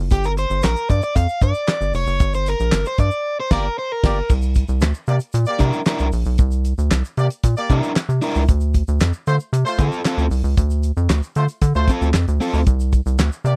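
A rubbery, square-toned bass opens this dry, close 1970s-style funk excerpt at 115 BPM, joined at once by a damped drum kit with a fat snare, tight kick, hi-hat, handclaps and crash, a grainy egg shaker in the background, and a crunchy overdriven guitar that takes a solo over G minor, with a band accent arriving at 2.2 seconds. From 3.5 seconds a clear, tight horn section adds a second line as the harmony moves through C9 and Dm7 to Csus2. The mood is hypnotic and sly, with the bass, drums and guitar up front.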